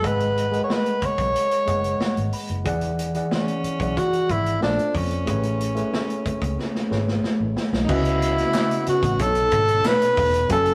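Bittersweet and silky, this lush 1970s-style soul excerpt at 92 BPM sets a breathy, up-front tenor saxophone with vibrato and scooped notes over a worn, slightly out-of-tune tine electric piano with light overdrive that adds a fill at 1.7 seconds, a round, foam-muted electric bass and a vintage drum kit with a punchy kick whose fill at 6.6 seconds leads into a new section where a distant, very quiet dark French horn section enters at 7.9 seconds with sustained chords and hollow group handclaps sound in the background, captured as a rough rehearsal-room recording with moderate stone room reverb.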